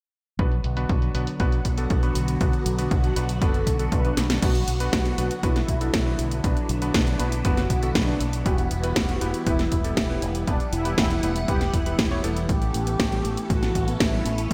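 At 0.4 s a bittersweet, nostalgic italo disco groove in B minor starts up at 119 BPM in a straight 4/4, with a punchy analog kick, a cracking, tape-warm house kit sitting up front under gated reverb, and a filter sweep on the drums that runs until a fill at 4.2 s. Beneath them, a fingered electric bass with a bright, punchy envelope filter holds the low end, while a swirling phased string machine sustains chords in the background and a vintage electric grand piano with clangy, chorused unisons adds filtered stabs. From 2.4 s a mellow, brassy synth lead carries the melody with vibrato, chorus and delay, floating over chords that move from Bm to Em and then Aadd9. The piano drops out at 12.4 s, and a soft, round pluck enters at 12.5 s with gentle arpeggios, dark and slightly gritty from a 12-bit sampler character, tucked behind the other parts. A lush hall reverb and bright 1980s-style digital production give this short cut from a longer piece its glossy sheen.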